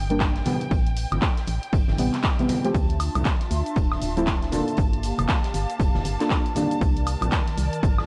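Deep house at 118 BPM in D minor, moody and deep, with a swung 16th-note feel and a cassette-tape haze over light studio reverb, cut from a longer piece that moves through Am9, Dm9, Gm9 and Cm9. An up-front punchy electronic kick and a gritty analog drum machine of cabasa, handclaps, hi-hat and woodblock drive it, with a big-room acoustic kit's filtered hi-hat and snare and soft-handed, ringing congas, entering at 0.5 seconds, sitting in the background. Nasal, filter-plucked chord stabs, chorused, delayed and pumping, ride over a dark, organ-like FM bass, while a rich, focused chamber violin section with vibrato holds a high pumping line and a hollow, flute-like, warbling pad joins at 2.7 seconds.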